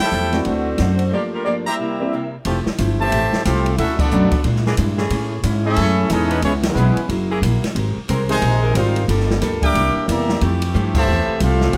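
A lightly reverberant recording with a faint mains hum captures a brassy, energetic big band swing excerpt in F major at 181 BPM. A mellow, distant saxophone section carries the opening melody over brilliant trumpet stabs and a warm grand piano, then a clear, close-miked trumpet section takes the melody from 3.0 s while a bright, tight trombone section plays a second line and an edgy saxophone section holds sustained chords in the background. Underneath, a woody, thumpy pizzicato upright bass sits up front, a boxy picked parlour acoustic guitar with old strings accompanies, and an open small-room drum kit with dark cymbals and a boomy kick keeps the swing going, with band accents punctuating the passage.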